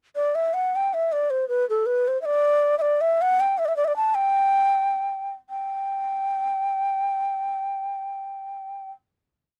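A breathy, mellow low ney carries this short Balkan folk piece alone, its end-blown reed cane tone sitting up front with crisp attacks and vibrato as it spins a motif-based melody in sentence-like phrases, ranging from A4 to A5. The mood is virtuosic and wild in free time, with a final note arriving at 5.5 seconds and lasting until 8.1 seconds. The sound is dry and close, with little reverb, like a 1970s studio recording.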